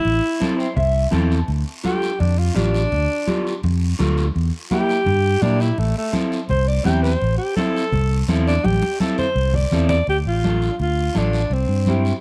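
Passionate and fiery, this cumbia excerpt in D minor at 168 BPM features a breathy, whispered alto saxophone soloing up front from the start until 10.1 seconds over a round, punchy fingered electric bass, thick-skinned congas in the background, a raspy guiro and a dark, slightly broken-up electric guitar bathed in spring reverb that adds a clean fill at 0.4 seconds, all captured with close, detailed microphones and little reverb, with a drum fill at 8.6 seconds leading into a new section over Dm and C.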